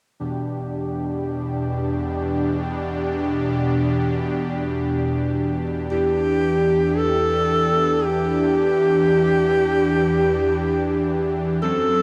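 Synthwave in free time and E minor, nocturnal yet driving, where a soft, detuned supersaw holds sustained chords from 0.2 seconds, opening on Em7, and a breathy, close-miked alto saxophone with subtone, vibrato and digital delay enters at 5.9 seconds with a jazz-style solo melody, all bathed in a wet plate reverb and a dark, warm production in this short excerpt from a longer piece.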